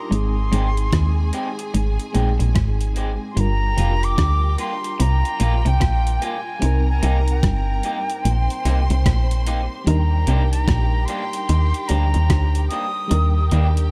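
A 74 BPM groove in 4/4 with a swung sixteenth-note feel sets up this smooth, romantic lovers rock reggae excerpt in Eb major, cut from a longer piece and moving through Abmaj7, Gm7, Cm7 and Ebmaj7. The gated 80s digital drum machine plays hi-hat, thumpy kick and rim click with an overdriven, sampler-style grit, while the woody FM bass sits up front, soft, round and dark. A clean, scooped twangy guitar riff lingers in the background with spring reverb and dub echo, and a bright, slightly broken-up guitar through a small old amp adds picked, lo-fi stabs from 0.5 seconds. An FM electric piano with tremolo fills the accompaniment with a full-bodied tone and a noise layer. Over this, an airy, distant jazz flute carries the expressive melody with a chiffy attack, vibrato and tape echo, shadowed by a lush, bowed studio string section with dub echo, all in a fairly dry room.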